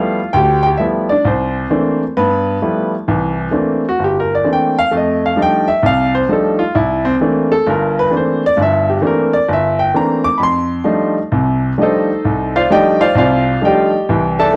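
A clear, intimate baby grand piano plays relaxed solo jazz in C major at 131 BPM with a swung eighth-note feel, sitting up front with audible action noise in a dark, warm production and moderate large-studio reverb, spanning G1 to D6 over G13, C13 and F13 chords and stepping into a solo passage from 3.1 seconds until the excerpt ends at 14.6 seconds.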